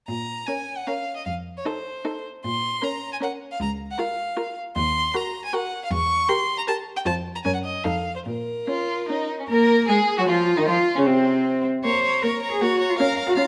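A quick, dramatic and urgent classical-period string quartet movement in Bb minor at 154 BPM in 3/4 with a rubato feel, cut from a longer piece, where the first violin carries a focused, vibrato-rich melody with a smooth top over a second violin line, a bowed viola accompaniment and an even, smooth cello bass that opens at 0.1 seconds, all set in a moderate recital hall reverb as the harmony moves from Bbm through F7, Ebm and Edim7 before the opening section returns at 9.5 seconds.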